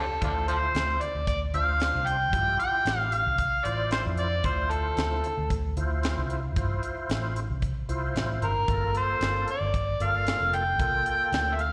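Straight-eighth soul blues in D minor at 113 BPM, this smoky, mournful passage is cut from a longer piece and sits on a Dm7 chord before moving to Gm7 at 8.7 seconds. An overdriven, amplified harmonica carries the melody up front, gritty and full of vibrato, with tongue slaps and scooped notes, and a slapback echo trails its lines. Beneath it a clean tonewheel organ fills in the harmony through a slow rotary speaker and chorus vibrato, its full tone also touched with slapback echo. A vintage muted fingered electric bass gives round, punchy, foam-muted low notes, dark and amped and placed forward in the mix. A tight funk drum kit joins at 0.2 seconds with a dry, airy, polished sound, a high-tuned snare, hi-hat and a tight kick. The whole thing sounds like a live gig heard through the venue's PA, with small room ambience, recital hall reverb and a dull top end.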